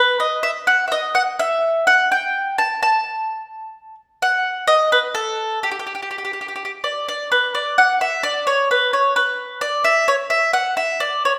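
Bathed in the lush reverb of a recital hall, this brief fragment of wistful, passionate Italian folk features a solo acoustic mandolin, bright and woody with its double strings picked up front, moving freely in a rubato 6/8 around 85 BPM and settling into B minor at 7.1 seconds.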